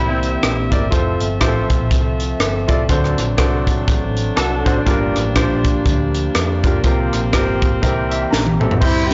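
A swung 4/4 groove at 122 BPM drives this jubilant, soulful uptempo gospel passage, cut from a longer piece. Up front, a crisp fusion drum kit sits in a pumping small room, with a punchy kick, a high-tuned snare with soft clipping, hi-hat, rim click, toms and crash. A dark, round hollow-body short-scale bass with transformer saturation anchors the low end beneath a clear concert grand piano with deep bass. The piano accompanies throughout and adds a fill from 7.8 to 8.8 seconds, joined by a drum fill from 8.3 seconds. A percussive tonewheel organ with key click and fast rotary speaker holds mellow, flute-like chords, while a muted, nasal French horn section sustains chords in the background, and a clean semi-hollow electric guitar with ensemble chorus adds a brief fingered second line. At 8.8 seconds an intimate chamber string section with light vibrato and slapback echo takes the melody over harmony that moves from C7 through Fmaj7, D7, Gm7 and C7sus4 back to C7, all within a blown-out, overdriven recording with light reverb and a dull top end.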